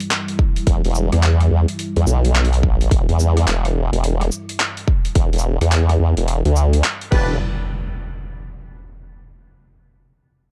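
A moody, full-bodied analog pad holding an Em7 chord with sidechain pumping and a gritty, overdriven, pitched-down boom bap sampler kit of crash, handclaps, hi-hat, rim click and shaker open this swaggering, playful glitch hop excerpt at 107 BPM with swung 16ths, joined by a punchy, up-front electronic kick at 0.4 seconds and a detuned sawtooth wobble bass with a formant-filter sweep at 0.7 seconds, before clear, jazz-style horn stabs with dub echo flash at 7.1 seconds and an electronic impact carries the dark, dry mix into a closing stretch with the chord gone.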